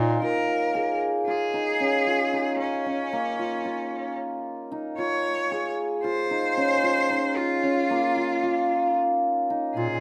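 Hypnotic and urgent, this contemporary chamber piece moves in an uneven 9/8 metre at 226 BPM counted in eighths, set in Bb minor with a straight feel. A hammered dulcimer runs arpeggios throughout, its shimmering, ringing tone sitting up front. After the opening 0.2 seconds, a bright cello takes the melody, bowed by a single player with vibrato and a biting, intense edge that carries from a distance. A clear bass clarinet with a soft attack supplies a low Bb, heard only at the very start and again at 9.8 seconds, its classical-style tone sounding roomy and distant. The harmony rests on a Bbm7 chord, and close, detailed microphones with light reverb give this short section, cut from a longer piece, an intimate, focused sound.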